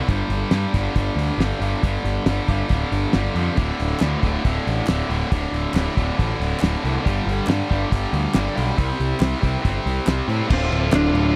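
Swaggering and driving, this classic rock excerpt in D minor moves at 138 BPM in a straight 4/4, with a tight, bright distorted guitar riff up front over a punchy fuzz bass and a cloth-damped, thuddy drum kit with dark cymbals, a fat snare and a rolled-off top. A second overdriven guitar adds its own riff in the background from 3.6 seconds, and hollow group handclaps join at 4.0 seconds. At 10.5 seconds a slightly broken-up, compressed lead guitar starts a melody on a D minor chord, while a clean tonewheel organ with key click and rotary speaker sits barely audible beneath, all in a dry, close 1970s-style studio sound.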